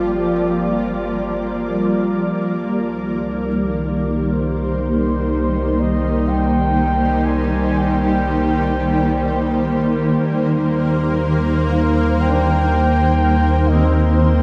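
Spacious and serene, this ambient passage, cut from a longer piece, drifts over Gm7, Cm7 and Eb6 chords in a dreamy mix soaked in lush hall reverb. Up front, a shimmering, ethereal pad with octave-up shimmer and chorus holds sustained chords, while a deep, round sub bass and a distant, breathy flugelhorn both fade in; the horn plays a jazz-style solo melody with light vibrato and scooped notes through shimmer reverb and delay. A very quiet felt-muted upright piano adds soft, intimate arpeggios, dropping out at 5.1 seconds and returning at 12.3 seconds.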